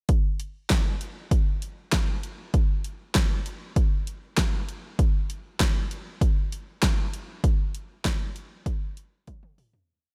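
A deep house drum kit opens this bright, nostalgic pop piece at 98 BPM in a straight 4/4, its layered electronic beat sitting up front with a punchy kick, a fat snare, handclaps, hi-hat and toms under gated reverb. The whole short piece is a chorus in a dry room, a steady drum-machine groove that begins fading out at 7.4 seconds, with a drum fill arriving at 9.3 seconds.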